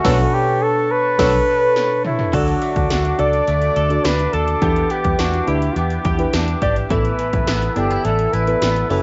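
1980s-style pop at 105 BPM with a nostalgic, urgent mood: an up-front flugelhorn with light vibrato carries the melody over a mellow FM electric piano with chorus and phaser, a twangy, compressed clean guitar riff with tape echo, sustained woodwind chords in the background, a round, foam-muted fingered bass, and overdriven electronic pad drums with gated snare and toms, while a tight horn section adds stabs during a band accent that closes with a drum fill at 2.3 seconds, all heard through a small room and a dark cassette home recording that moves through Bm9, D, Em7 and Asus2 in this short cut from a longer piece.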